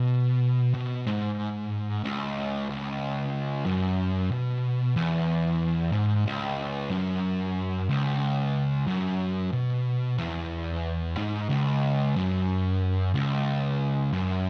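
A double-tracked electric fuzz guitar plays alone from the very first moment in this heavy, sludgy metal piece, cut from a longer work. Picked low in its register and distorted, the guitar sits up front with a warm, fuzzy tone. A new section begins at 2.7 seconds and carries the guitar through to the end at 14.5 seconds. The production is dark and warm, with a moderate large-studio reverb that gives the playing a sense of weight and space. The overall effect is heavy and sludgy, built entirely on that single doubled, fuzz-soaked guitar.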